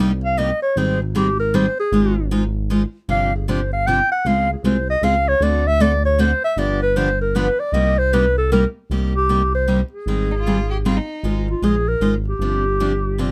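Bright, fresh-stringed picked steel-string acoustic guitar and a smooth, ring-modulated synth bass open this fiery, bittersweet jazz manouche waltz in C minor at 155 BPM with a swung 3/4 lilt, as a breathy, subtoned clarinet with scooped notes and vibrato takes an up-front solo through a close, dry sound, and a soft, airy sul tasto violin slips in quietly between 10.3 and 11.4 seconds.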